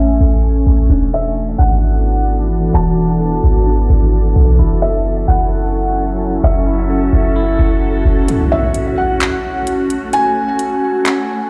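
A half-time 4/4 pulse carries this dreamy, blissful atmospheric cloud-rap excerpt, where a soft, felt-muted upright piano with audible action noise sings a delayed melody over a glassy, ethereal FM pad with ensemble chorus, a deep, boomy 808-style bass and a compressed, fingered clean electric guitar that drifts in the background through spring reverb and delay beneath a filter sweep, until bass and guitar drop away at 8.3 seconds for an electronic impact and a tape-warm R&B kit of handclaps and metallic hi-hats, all set in a stone room's reverb.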